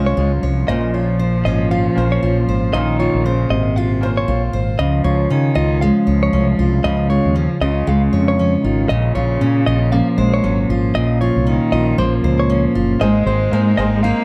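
Sunny and heartfelt, this acoustic pop excerpt moves with a gently swung sixteenth-note lilt in a relaxed four. A full-bodied, fingerpicked steel-string dreadnought sits up front beside a fretless electric bass that sounds warm, direct and amped, together carrying the groove from start to finish. A bowed cello adds a focused, smooth-topped second line with vibrato, while a clean, compressed electric guitar recorded direct picks high arpeggios through a slapback echo. A bright, woody upright piano with short sustain stays in the background, dropping out at 4.8 seconds and returning at 13.0 seconds. The harmony moves between Db and Bbmadd9 before settling on Abadd9, all captured by close, detailed microphones with light reverb.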